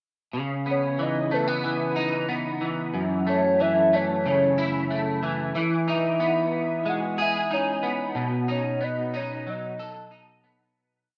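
Hazy and melancholic, this short dream pop piece at 92 BPM in C# minor pairs an up-front, twangy electric guitar at the edge of break-up, fingerpicking arpeggios in a rolling pattern through ensemble chorus and tape echo, with a hollow, woody clarinet-like synth lead that carries a motif-based, song-like melody from 0.7 s with vibrato, chorus, plate reverb and tape echo, all set in a wet studio reverb with a rough home-demo character as the chords move from C#m9 through F#m7 and Emaj13 to B7 before the fade-out beginning at 8.2 s.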